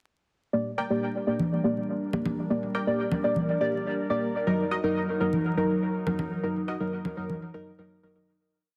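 Nocturnal and hypnotic, this short dub techno piece in G harmonic minor moves at 122 BPM from Gm to Ebm. From 0.5 s a deep, nasal chord stab with phaser, cassette-tape colour and dub echo leads, joined by a warbling, nostalgic lo-fi pad, sparse muted stabs with echo, and overdriven electronic congas, inside a lush hall reverb with vinyl crackle, before a fade-out from 5.8 s.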